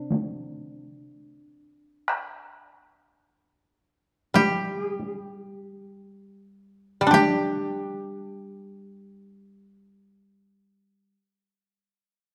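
Two kotos open together, one carrying a bright, woody melody in a narrow middle register while the other supplies a mellow accompaniment reaching lower. A taiko ensemble joins almost at once, struck with heavy sticks and carrying a vintage, band-limited sound. This calm, austere Japanese chamber piece, cut from a longer work, moves in a rubato 4/4 between 40 and 63 BPM, tuned to A4 = 444 Hz. Its tempo gradually slows through the opening passage until a new section begins at 7.1 seconds. The drums fall away at 7.8 seconds, and both kotos continue until 11.2 seconds. All three parts sit up front, with the plucked strings heard close and dry against the moderate reverb of a recital hall.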